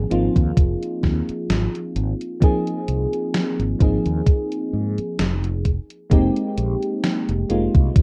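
A thumpy, up-front electronic kick drum enters at 0.4 seconds beneath a soft FM electric piano, whose lush chorus, vintage 12-bit sampler grit and tape echo drift over Ab69 and Fm11 chords, while a dark, round fretless electric bass anchors the low end and a gated 80s digital drum machine adds hi-hat and a gated-reverb snare, giving this nostalgic, melancholic vaporwave fragment a loosely swung feel and the light-reverb haze of a rough cassette home demo.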